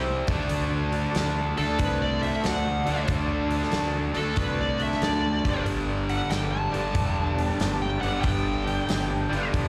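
Gritty and swaggering, this short cut from a longer piece is blues rock with a southern rock edge, played with a loping swing. A bright, double-tracked stack guitar sits up front, driving the riff with a cranked crunch and slapback echo, while a fingered electric bass adds a fuzzy, distorted low end. A smooth, overdriven lead guitar carries the melody with its own slapback echo. Beneath them, a thick tonewheel organ holds sustained chords very quietly through a slow rotary speaker. The big rock drum kit comes in at 0.3 s with a tight kick, a medium-tuned snare and hi-hat, and a rolled-off top. The band sounds like a live gig heard through a venue's PA, with moderate club reverb and a recital-hall ambience, and the harmony shifts from D to G at 5.3 s.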